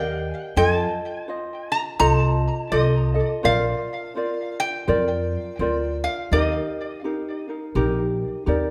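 A gently swung 4/4 at 84 BPM sets a sunny, relaxed Hawaiian mood in Eb major, with chords moving from Ebmaj7 through F7 and Bbadd9 back to Eb. Up front, a metallic, nasal metal-body resonator guitar carries the melody with fingerpicks and slide, trailed by tape echo, over a light, thumb-plucked ukulele and a woody, pizzicato upright bass on steel strings. A wet recital hall reverb surrounds this short cut from a longer piece, with the guitar stopping at 8.4 seconds.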